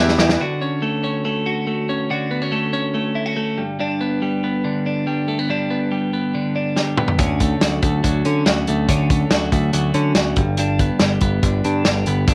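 A light reverb colors this short passage of jangly indie pop, and the mood is nostalgic and youthful. A bright, clean twelve-string electric guitar plays picked arpeggios up front throughout, its twangy, compressed tone carried by a slapback echo. After a brief drum fill and a touch of bass at the start, the guitar carries on alone from 0.4 seconds, moving between Dmaj7 and G. A vintage drum kit from a small room returns with another fill at 6.8 seconds, its punchy kick, medium-tuned snare, hi-hat and toms sitting mid-forward with a rolled-off top. The picked electric bass comes back in at 7.2 seconds, direct, warm and punchy, filling out the low end under the guitar.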